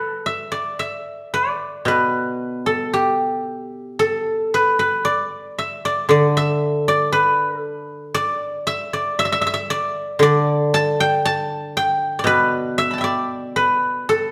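Elegant and pastoral, this short excerpt of Chinese traditional solo plucked-string music unfolds at a slow, rubato 58 BPM in 4/4. A lone guzheng carries the whole piece from 0.0 to 14.3 seconds, ranging from B2 up to B5. Played with fingerpicks, the acoustic instrument has a ringing, silvery tone and sits up front in the sound. A generous large-studio reverb, with a decay of 1.3 seconds, surrounds the guzheng and gives it space, as though captured live in one room. The instrument is tuned slightly above standard pitch, with A4 at 441 Hz, and the passage is cut from a longer piece.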